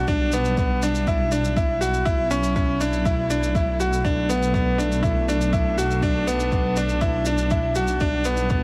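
Piano and strings electronica in B minor at 121 BPM, this moving, melancholic fragment of a longer piece sets a bright, woody upright piano riff with tape echo up front over sustained chords from a dark, vibrato-laden string quartet, a rumbling, detuned saw bass pumping against the sidechain, and a deep electronic kick with a soft shaker joining at 0.1 seconds, all in light reverb as the harmony moves from Em7/B through F#m7/B to Bm7.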